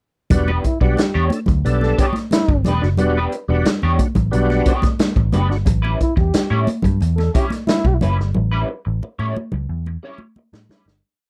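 A gritty, overdriven tonewheel organ with chorus vibrato and slow rotary speaker punches out rootless funk chord stabs up front until 5.6 seconds, over a sly, cool funk groove at 90 BPM in E dorian, moving from Em7 to A9 at the break at 5.7 seconds. Alongside it, a dark, foam-muted picked bass plays a syncopated riff anchored on the downbeat with ghost notes, while a roomy big-band drum kit with a punchy kick and rolled-off top lays down a syncopated groove with ghost notes, together with damped, high-tuned congas and a twangy, slightly broken-up guitar scratching sixteenth-note rhythm through a wah. A breathy, whispered trombone with light vibrato adds short jazz riffs from 0.7 to 7.9 seconds, and the dry piece ends on a drum fill as it fades out from 8.4 seconds.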